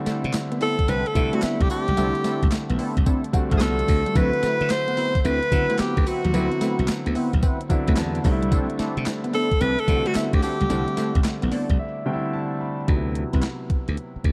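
New jack swing R&B at 110 BPM, this punchy, confident passage rides a swung sixteenth-note feel over chords moving between C69 and D13. An overdriven, sampler-style 8-bit drum machine sits up front with a thumpy kick, medium-tuned snare, hi-hat, handclaps and tambourine, while a bright, growly slap bass with a glassy edge drives the low end beneath a barely audible group handclap. A clear tenor saxophone carries the melody from 0.6 seconds, up front with light vibrato, scooped notes and a smooth top in a pop style. Behind it, an intimate concert grand piano with audible action noise, deep bass and long sustain supplies accompaniment and fills, one of which carries through a break at 11.8 seconds. In the background, a slightly broken-up picked electric guitar plays a riff through lush chorus, and a detuned sawtooth polysynth adds funky stabs with a filter pluck, moving notch, chorus and digital delay. 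The production is dark and warm with light reverb, and the passage is cut from a longer piece.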